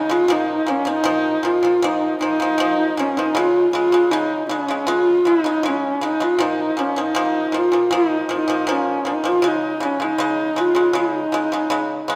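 A dark, husky horsehead fiddle sings a solemn, windswept Mongolian folk melody up front with vibrato and portamento, its bowed horsehair strings sounding woody over dry, percussive fingerpicked pipa arpeggios at 79 BPM in a Bb yu mode, both sitting in the reverb of a concert hall across this 12.2-second excerpt cut from a longer piece.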